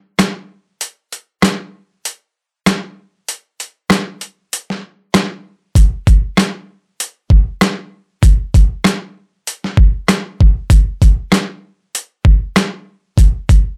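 A swung 4/4 hip hop groove at 97 BPM carries this tough, dark boom bap fragment, cut from a longer piece, with a break marked over its first 5.8 seconds. A single sampler-style drum kit plays from 0.2 to 13.7 seconds: a thumpy kick, a medium-tuned snare, rim clicks and hi-hat, all pitched down, compressed and overdriven into a gritty sound. The kit sits up front in a light reverb.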